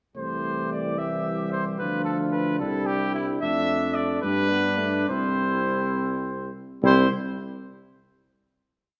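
In a lilting 6/8 at 68-75 BPM in dotted quarters, this short, stately brass quintet piece in C major moves through a brief cadence from C through Dm6, Dm/F and G before settling on a final chord at 6.8 seconds. A clear, distant trumpet carries the melody up front. A second trumpet with light vibrato sits in the background with independent inner lines, while the dark French horn and close-miked trombone hold sustained chords and the present tuba anchors a sustained bass with passing notes. A wet scoring-stage reverb gives the ensemble a roomy, warm glow.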